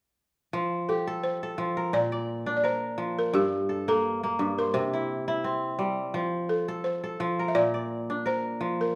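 A bright, ringing kora opens at 0.5 s, fingerpicked arpeggios sitting up front and spanning from G2 up to D5. At 0.9 s the balafon joins with a melody between G4 and E5, its woody, buzzing tone struck with soft rubber mallets and kept dry beside the crisp strings. This joyful, flowing piece of West African traditional string and xylophone music moves at 86 BPM in 4/4, with a gentle swing on the sixteenths. In F major, the harmony cycles through F, Bb, Gm and C before returning to F and Bb, and the two instruments carry on together until the passage is cut at 9.0 s. A moderate recital-hall reverb gives the performance a sense of space, and the tuning sits slightly below standard pitch, at A4 = 438 Hz.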